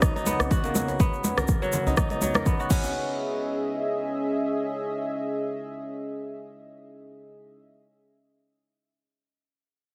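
Afro house at 123 BPM in C# dorian, a warm, hypnotic excerpt with a swung sixteenth feel, where an overdriven, deep electronic kick sits up front alongside a produced afro-pop kit with crash and rim click, a warm, deep djembe with metal rattles, grainy egg shaker and bright, band-limited congas in the background. A crisp, ringing kora plays fingerpicked arpeggios through a low-pass filter, delay and sidechain pumping until 4.4 s, while a smooth, detuned sawtooth pad with a sub octave and chorus holds sustained chords, moving from B/C# to C#m at 2.7 s. The drums and percussion stop around 2.9 s, and once the kora ends at 4.4 s the pad carries on alone to 7.6 s, all under plate reverb and a heavily compressed, radio-like sound.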